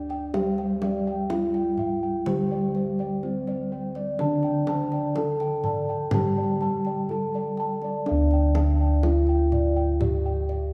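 A wet concert-hall reverb with a long tail bathes this short, serene Javanese gamelan passage cut from a longer piece, giving it a shimmering, spacious glow. Up front, a bronze metallophone carries the melody with a dark, smooth ring from padded disc mallets, while a second metallophone spins arpeggios whose paired tuning produces shimmering beats. Bossed gongs add their own round, beating arpeggios higher up, and a lower set of bossed gongs, struck with padded beaters, supplies a mellow, airy bass. A deep, vintage-sounding kendang with a band-limited tone keeps the percussion going throughout, and a soft third metallophone plays an airy accompaniment that drops out at 8.1 seconds. The same material repeats from that point to the close at 10.7 seconds, keeping the serene mood intact.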